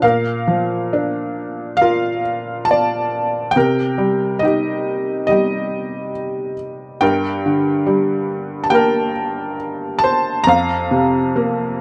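A felt-muted upright piano carries this short classical passage alone, heard from 0.0 to 11.8 s, its soft, mellow tone sitting up front and close. The mood is dark and wistful, unfolding at 69 BPM in 4/4 with a rubato feel that lets the lyrical line breathe freely. The harmony moves from Bb to Cm7, then to Gm at 7.0 s, before settling on an unresolved Fsus4 near the close. The playing spans F2 to Bb5, and the thin felt gives the instrument an intimate, hushed quality, with audible action noise adding a tactile presence. A light reverb surrounds the piano, and the passage sounds cut from a longer piece.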